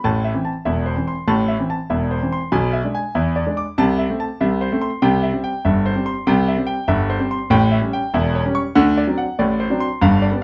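A solo concert grand piano opens on an A minor chord and sets a jaunty, lively ragtime feel at 96 BPM in 2/4, with a light swing on the sixteenths. Its tone is clear and slightly worn, with a deep bass and short sustain, and it sits up front in the mix. The harmony moves from A minor through E7 over B and A minor over C before settling into C major at 5.0 seconds. From there it passes through A7 and D7. The piano spans from the low E1 up to D6, is tuned a touch high at A4 = 441 Hz, and is framed by a light reverb. This brief passage of about 10.4 seconds is cut from a longer piece.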